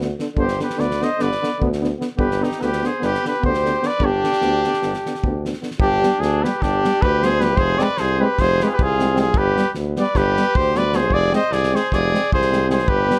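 Driven by a straight 9/8 pulse at 303 eighth-note beats per minute that keeps speeding up, this fiery, virtuosic Balkan brass band fragment in G phrygian dominant moves between G and F minor chords, shifting into a second section at 5.8 seconds. A clear flugelhorn carries the melody up front with plate reverb from 0.4 seconds, while a distant, roomy trumpet with vibrato plays a second line. Beneath them, a present trombone and a warm euphonium with light vibrato sit in the background as accompaniment. A soft-attacked tuba holds the bass up front, and a loose acoustic drum kit with a fat snare, tight kick and rolled-off top drives everything from a small room under light reverb.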